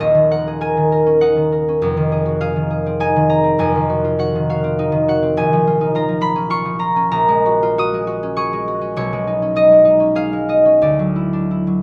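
Moving in 3/4 with a free, rubato feel, this solo concert harp piece drifts between roughly 86 and 106 BPM. It is classical in style and serene, even dreamy, in mood, and this short excerpt, cut from a longer work, runs just under 12 seconds. The fingerpicked harp sits up front, its acoustic tone warm and ringing as it spans a broad register from Eb1 up to Eb6. The harmony glides through seventh and added-note chords, starting on Ebm7, passing through Fm7, Bbm7 and Gbadd9/Bb, settling on Cb69, and reaching an unexpected Dadd9 at 10.8 seconds. A moderate stone-room reverb lets each note bloom and linger, lending the playing a spacious, contemplative glow.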